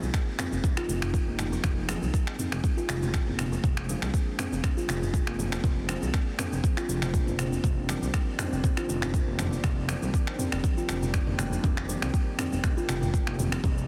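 A heavily compressed, radio-like sound with light reverb and a digital ambience frames this short cut from a longer afro house piece, whose mood is warm and spiritual. It moves at 120 BPM in 4/4 with a 54% swing on the sixteenths, sitting in F dorian and resting on Fm7 before shifting to Cmadd9/F at 7.6 seconds. A deep house kit of cabasa, finger snaps and toms plays from the very start, and a deep, layered electronic kick joins it at 0.1 seconds and sits up front, both carrying the close feel of a small room. Congas come in at 0.6 seconds, bright, thin-skinned and very quiet, heard from a distance in a large room under soft hands. A smooth gliding synth bass of sawtooth and triangle waves, wave-folded with vibrato and portamento, pumps against the kick, as does a woody, hollow kalimba playing airy, ringing arpeggios through a delay. In the background, a vintage analog pad of detuned sawtooth and triangle tones holds sustained chords that warble through a lush chorus and pump with the beat.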